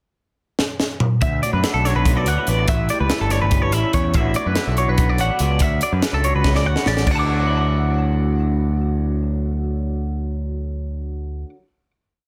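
Set in 7/8 at 287 BPM counted in eighths with a straight feel, this short, complete math rock and midwest emo piece in D major opens with a drum fill from 0.6 seconds that leads into the full band at 1.2 seconds. The mood is intricate and wistful, moving through D69, A7 and D69 over A before settling on a Dadd9 final chord at 7.1 seconds. The crisp fusion kit drives an odd-metre groove on kick, snare, hi-hat, toms and crash, with a high-tuned snare, a punchy kick and a gritty, saturated, pumping small-room sound placed up front. A growling picked electric bass plays a syncopated riff, overdriven and prominent, while a twelve-string electric guitar repeats a clean, twangy, compressed arpeggio ostinato high above, coloured by spring reverb and digital delay. Beneath it, a second electric guitar through a small old amp rolls out fingerstyle arpeggios with a slightly broken-up, lo-fi character and a phaser. 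The drums stop at 7.2 seconds while the strings ring on, and the overall sound is dry, dense and heavily limited in a modern master.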